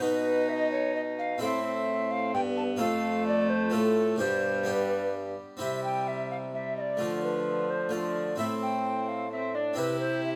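A renaissance-style classical consort dance in a stately, courtly 3/4 at 129 BPM, this short excerpt sets a mellow, hollow alto recorder melody with tongued chiff and vibrato over a dry, close-miked harpsichord plucked on two sets of strings, a rich, reedy gut-string viola and a warm, roomy solo bassoon carrying the bass, in a close, detailed recording with little reverb and a new section arriving at 5.6 s.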